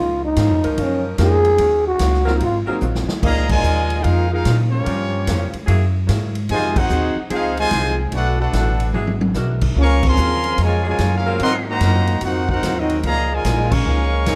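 A raspy, growling trombone opens this joyful, brassy big band swing in Db major at 147 BPM, scooping its notes over a woody pizzicato upright bass and a dark, very quiet hollow-body archtop guitar. The swinging drum kit and a tight saxophone section holding sustained chords join soon after, and a grand piano adds brief accompaniment. At 3.2 seconds, after a drum fill, a clear trumpet section with vibrato takes the melody while a trombone section plays a second line beneath, punctuated by band accents, all set in a dark, warm production with light reverb and natural big-room drums with a boomy kick.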